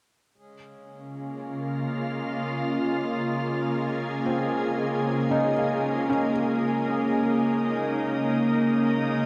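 Luminous and weightless, this ambient excerpt opens at 0.4 s with a reedy, breathing pedal harmonium drone fading in from the background, joined at 1.0 s by a pure, bright organ-like pad holding sustained chords up front through ensemble chorus and a filter sweep, while from 4.3 s a felt-muted upright piano fades in with intimate, mellow arpeggios, audible action noise and diffuse delay, inside a huge, wet reverberant space.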